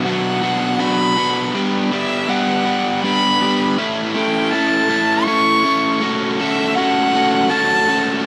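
Rock in a straight 3/4 metre, this short cut from a longer piece feels euphoric and hopeful, and it is framed as a build-up across its full 8.3 seconds. A bright, overdriven electric guitar sits up front, its picked, double-tracked riff spanning the low register into the middle throughout. Above it, a single warm violin carries the melody in a high range, bowed with expressive vibrato and portamento and set at a distance with a digital delay. The harmony moves through Bm, Gmaj7, A and F#m/A, with the last change arriving at 6.0 seconds. Light reverb and a small-room ambience give the sound a close, intimate setting.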